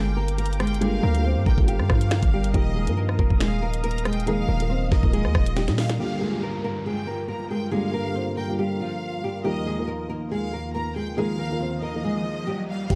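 Ominous and tense, this half-time drill hip hop excerpt at 139 BPM in G phrygian sets a woody, fingerpicked nylon-string guitar melody, filtered and delayed, over a dark, boxy concert grand piano, a smooth chorused analog pad and a clear violin section with light vibrato and its own delay, while a saturated, distorted 808-style bass and a drill kit with knocking kick, sharp snare, snaps and hi-hats sit up front until 6.0 s, giving way to a background downlifter and riser before bass and drums return at 12.9 s.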